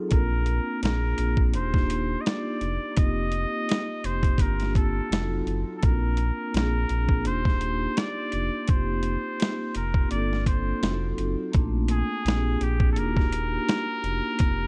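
A gritty, pitched-down boom bap drum kit sits up front in this dreamy, cosy lo-fi hip hop excerpt, its thumpy kick, high-tuned snare and hi-hat carrying vintage 12-bit sampler grit and a compressed punch at 84 BPM in 4/4 with a gentle 16th-note swing. A deep, full sub bass with an added octave sits just as close, its sine-and-triangle tone pairing a fast attack with sustained notes. Mellow vibraphone chords, struck with soft mallets, ring with a slow motor vibrato through cassette tape colour, a low-pass filter and tape echo, moving through Bbadd9, Ebmaj7, F7sus4, Gm11 and F7b9 in Bb major and turning to Bbmaj9 near 11.5 seconds before passing on to Bb9 and Ebmaj7. Over them a trumpet with a straight mute plays a jazz-style solo melody with a nasal, vintage character and scooped notes, its sound softened by its own low-pass filter and tape echo. A small-room ambience and an echo-heavy mix, treated with cassette tape, wrap the parts together as the passage runs to 14.7 seconds.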